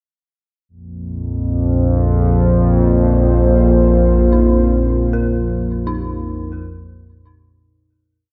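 Lightly reverberant and cavernous, this short, unsettling dark ambient drone piece opens at 0.7 seconds with a deep, detuned analog pad holding slowly shifting sustained chords on a Bbsus2, joined at 0.9 seconds by an up-front, wave-folded sawtooth and pulse-width-modulated analog drone that evolves under a filter sweep, both softened by chorus. From 4.3 seconds an eerie, inharmonic FM synth bell fades in quietly with mellow, decaying arpeggios, its chorus and tape echo carrying three slow loops of unequal length that drift against each other, while the whole piece fades out from 4.4 seconds.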